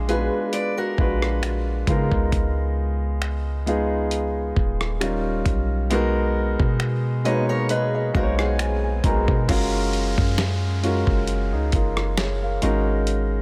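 Over a slow 67 BPM 4/4 groove with a light 16th-note swing, this sensual, longing contemporary R&B excerpt pairs a gritty, compressed sampler-style drum kit with a thumpy kick, finger snaps and rim clicks against a deep, boomy 808-style bass and an up-front concert grand piano moving through chords like Bb7b9b13, Db13 and Gbmaj7, while a fingerpicked steel-string acoustic guitar adds delayed arpeggios at 0.1 and 7.2 seconds, the piano plays a fill from 6.8 seconds, and a background electronic swell and downlifter enters at 9.0 seconds in a dry, close sound.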